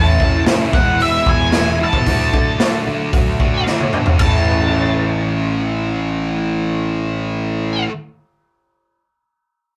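Cathartic and bittersweet, this short cut from a longer quiet-loud alternative rock piece moves in a straight 4/4 over a rough rehearsal-room sound with light reverb. A dark, distorted octave-fuzz lead guitar carries the melody high above a thick, bright fuzz guitar riff, while a full-bodied jumbo steel-string acoustic plays picked arpeggios in the background, finger squeaks audible. A round, overdriven fuzz bass anchors the low end with a direct-and-amped tone. The raw garage drum kit sits up front with a punchy kick, a medium-tuned snare, hi-hat, crash and toms in a small, pumping room, its gritty, saturated sound rolled off at the top. The chords move from A through E to D before returning to A at 4.2 seconds, as a drum fill closes, shortly before the kit drops out, leaving the guitars and bass to carry on alone.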